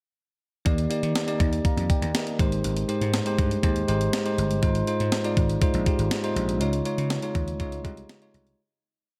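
Light reverb gives this short, glossy 1980s-style pop piece a polished sheen, with an uplifting mood carried in a straight 4/4 feel. A bell-like tine electric piano sits up front, clean and direct, playing syncopated chords in drop-2 voicings and adding short fills over a progression of Ebmaj7, Abmaj7, Fm7/Ab and Dbadd9. Beneath it, a vintage slap bass sounds amped and growly, driving a punchy, syncopated pop-funk line with slides. A clean 12-bit digital drum machine delivers a sampler-style groove of hi-hat, thumpy kick and a medium-tuned snare that lands a big backbeat, its electronic sound re-recorded in a large room and kept up front. All three parts enter together at 0.7 seconds and play through a single verse. A fade-out begins at 6.6 seconds and carries the piece to its close at 8.6 seconds.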